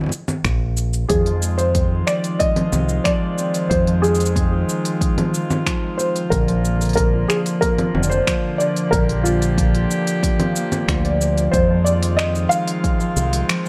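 A bright, up-front fingered electric bass with an envelope filter and tube saturation anchors this wistful, delicate folktronica piece at 92 BPM in F dorian. An organic electronic kit of cabasa, congas, finger snaps and smooth hi-hat opens the excerpt and carries a straight 4/4 feel, and a deep electronic kick enters alongside the bass at 0.4 seconds. From 1.1 seconds a felt-muted upright piano plays a soft, intimate melody through digital delay, while a thumb-plucked concert harp rings out arpeggios and a distant string quartet holds pure, floating sul tasto chords beneath, as the harmony moves from Fm7 to Bb and returns to Fm7 at 11.5 seconds in a light reverb.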